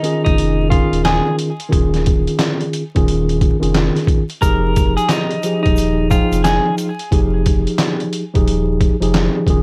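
Tough and reflective, this boom-bap hip-hop excerpt rolls at 89 BPM in 4/4 with a swung sixteenth feel, set in F minor. An up-front, compressed, pitched-down sampler-style drum kit drives it with a thumpy kick, medium-tuned snare, hi-hat and handclaps, and a deep, full sub bass with octave joins at 0.3 s, its sine-and-triangle tone sustained after a fast attack. A mellow tine electric piano, clean and heard through its built-in speakers with a cassette tape coloring, carries the harmony from Eb9sus4 into Fm9 at 4.4 s. On top, a picked, compressed clean electric guitar plays the melody until 6.7 s, touched by subtle chorus and tape echo, while a grainy, bright tube shaker sits briefly in the background. The dry mix has a rough hardware grit and a layer of vinyl crackle.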